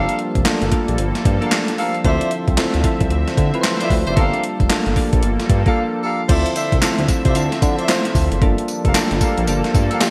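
A confident, bouncy new jack swing groove opens with soft, round electric-piano-like synth keys and a sweeping, detuned pad with chorus, over a nasal synth bass, mellow jazz-style horn stabs with digital delay, and a thumpy, overdriven gated drum machine with handclaps and tambourine, bathed in bright 1980s-style hall ambience and pausing for a brief break at 5.8 seconds.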